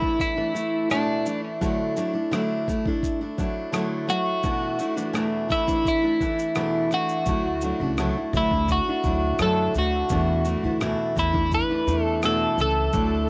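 Sunny and heartfelt, this acoustic pop excerpt moves at an easy 85 BPM in a straight 4/4, with a bright, clean twelve-string electric guitar carrying the melody through a tape echo over a warm, up-front picked steel-string acoustic guitar that shifts between E7sus4 and Dadd9. A dusty, sampler-style drum kit with a thumpy kick, rim click and shaker sits lower in the mix, its gritty, compressed sound re-recorded in a small room. A woody, growly upright bass joins at 7.3 seconds, and the whole recording stays dry and close, with little reverb.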